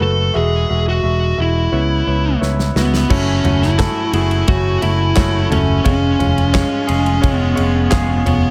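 A straight 4/4 pulse at 87 BPM drives this earnest piano-driven pop piece in F# minor, where a dark, fuzzy lead guitar carries the melody up front over a bright, polished concert grand and a warm, picked electric bass, joined when an acoustic drum kit with a punchy kick and handclaps enters with a fill at 2.4 seconds and a floating, distant, very quiet bowed string section arrives at 3.1 seconds as the chords move from Eadd9 and C#m7 to F#m7, all in light studio reverb.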